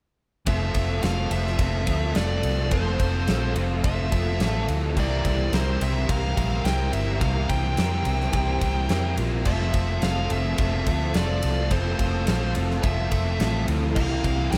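A round, foam-muted electric bass sits up front in this wistful, blissful excerpt of shoegaze-tinged dream pop rock, its dark, amped, punchy tone anchoring a straight 4/4 pulse at 107 BPM in F major. Above it, a nasal lead guitar with a parked wah carries the melody through overdrive and slapback echo, while two overdriven electric guitars play riffs: one biting and shadowy, tucked in the background under ensemble chorus, the other mellow and smeared by reverse reverb. A huge arena drum kit in a big room brings a fat snare, a thumping kick and bright crash and ride cymbals. Very quiet beneath the band, a picked twelve-string acoustic guitar adds boxy, shimmering octave-doubled arpeggios, and an analog string pad holds silky, detuned sawtooth chords with a slow attack, chorus and phaser. Every part plays from 0.5 s to 14.6 s over a small room ambience, as the harmony rocks between Fmaj7 and C7sus4.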